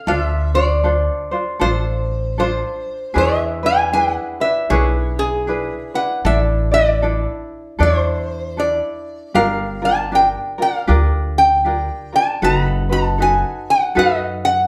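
Hawaiian in D minor at a languid, relaxed 78 BPM with a gentle swing, this excerpt cut from a longer piece features an up-front lap resonator guitar carrying the melody with a metallic, nasal slide tone played with fingerpicks, over a light fingerpicked tenor ukulele and a woody pizzicato upright bass on steel strings, the trio playing live together in one room bathed in a lush large-studio reverb as the chords move from Dm7 through E7, Asus4 and Gm7 to B7/F#.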